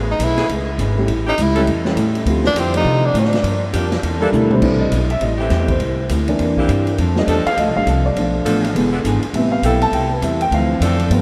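Riding a brisk swung pulse from a distant, roomy drum kit with a boomy kick, this energetic big band swing fragment opens with a bright, vibrato-laden tenor saxophone scooping into its short solo over a woody, up-front upright bass, a dark hollow-body guitar with analog chorus and an edgy saxophone section holding chords in the background, then a drum fill at 4.3 seconds hands off to a warm grand piano solo from 4.6 seconds, all bathed in a dreamy, reverb-soaked haze.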